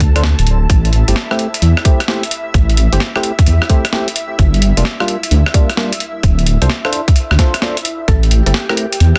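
A soulful, late-night slice of two-step UK garage at 130 BPM, swung on the sixteenths in A phrygian, where an overdriven, up-front electronic kick and a gritty, tape-touched breakbeat kit of hi-hat, rim click and snare drive under a deep, rumbling detuned saw bass that pumps to the sidechain. A hollow, nasal organ stab with chorus and delay enters at 0.2 s, while an airy, breathy pad sustains chords through Dm7, Am7 and Gm7. A woody mallet-like pluck slips in at 8.1 s, all within a dry, dense, heavily limited mix with a faint mains hum, cut from a longer piece.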